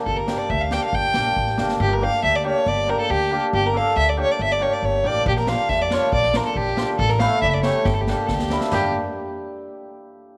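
A smooth, vibrato-rich bowed violin carries the melody up front in this festive yet bittersweet klezmer excerpt at 139 BPM in 2/4, over a shimmering, ringing hammered cimbalom and a woody pizzicato upright bass, while a street-band drum kit with a boomy kick and dark cymbals drops out at 1.8 seconds, returns at 5.3 seconds as the harmony moves from G minor to B flat, and plays a fill at 7.9 seconds, with a light small-room reverb around the ensemble.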